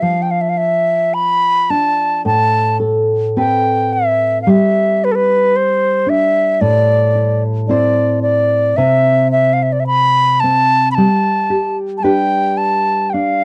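Tender and nostalgic, this brief excerpt of a Celtic slow air at 54 BPM drifts in a rubato 4/4 in G mixolydian, with an airy, straight-toned wooden flute carrying the tongued, expressive melody up front while a full-bodied, thumb-plucked nylon-string guitar accompanies with audible finger squeak, both heard together from start to finish in a dry, close 1970s-style studio sound.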